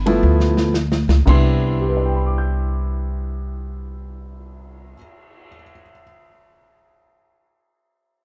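A dark, dry production carries this brief cut from a playful, relaxed swinging jazz piano trio in C major at 112 BPM, where an intimate grand piano with audible action noise leads the melody over a woody, thumpy pizzicato upright bass that stops at 4.9 seconds and a smooth small-room drum kit with dark cymbals and a boomy kick, whose fill runs through the opening slowdown as the harmony moves from G7 to Cmaj9 at 1.3 seconds.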